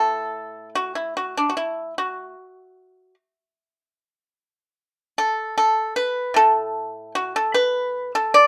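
A solo pipa opens the recording and carries it alone through its 8.5 seconds, a brief excerpt of Chinese traditional music with a flowing, elegant mood and a rubato feel. Played with fingerpicks, the acoustic pipa sounds dry and percussive, sitting up front and ranging from A2 to D5. A light reverb gives the room a gentle sense of space.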